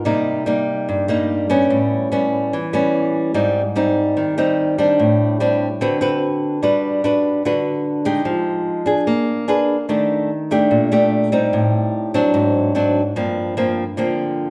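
Bossa nova in an intimate, wistful mood: a solo fingerpicked nylon-string guitar sits small and up front, with audible finger squeak, and moves through lush chords from Cm7 and Abmaj7 to Ebmaj7#11 before settling on Gm7 at 13.2 seconds, all bathed in a wet recital-hall reverb in this excerpt from a longer piece.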